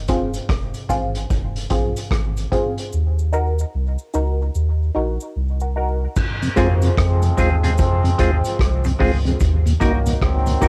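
A soft, round sub bass and a punchy vintage drum kit with dark cymbals open this meditative, deep dub reggae excerpt at 74 BPM in F phrygian, joined by a faint cabasa and a muted, resonant chord stab soaked in phaser and dub echo, before a mellow tonewheel organ with slow rotary speaker enters at 6.4 seconds and a distant trombone section and a bright, clean semi-hollow electric guitar follow at 6.6 seconds, all moving between Fm and Ebm under a hazy cassette-tape sheen.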